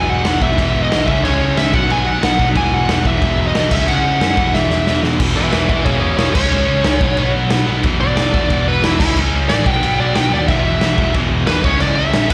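This energetic, upbeat punk rock excerpt in E major opens on a wall of guitars and bass at a driving 182 BPM in straight 4/4, with the raw garage drum kit crashing in at 0.2 seconds. Up front, a smooth, bright overdriven lead guitar carries the melody, then takes a solo from 5.2 seconds, just after a drum fill. Behind it, a scooped, compressed distorted electric guitar and a double-tracked, high-gain heavy guitar drive through the riff. An overdriven hollow-body semi-hollow guitar plays alongside them from the start, drops out at 5.2 seconds and returns at 10.5. All four guitars carry a slapback echo. Underneath, a growly, amped picked electric bass punches along, while the gritty, saturated drums, with a punchy kick, medium-tuned snare and rolled-off top, sit forward in the mix. The whole performance sounds like a live gig heard through the venue's PA, wrapped in a recital-hall reverb.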